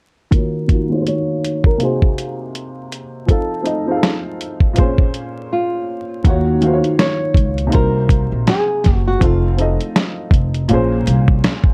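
A dusky, vinyl-crackled production with light reverb frames this melancholic, reflective lo-fi hip hop excerpt, cut from a longer piece and moving at 81 BPM in 4/4 with a swung sixteenth-note feel. A gritty, compressed sampler-style drum kit sits up front, its thumpy kick, medium-tuned snare and hi-hat carrying a vintage 12-bit crunch. A worn upright piano supplies the accompaniment, mellow and boxy, slightly detuned with short sustain and audible action noise, softened by cassette tape, a low-pass filter and plate reverb. Over it, a fingerpicked acoustic flamenco guitar carries the melody, also filtered and set in plate reverb. The chords cycle through Ebm7, Cm7b5, F7 and Bbm9 twice, with a filter sweep across the opening half and a brief break at 5.5 seconds. When the progression repeats, a woody pizzicato upright bass on steel strings joins at 6.3 seconds and plays until 11.4 seconds.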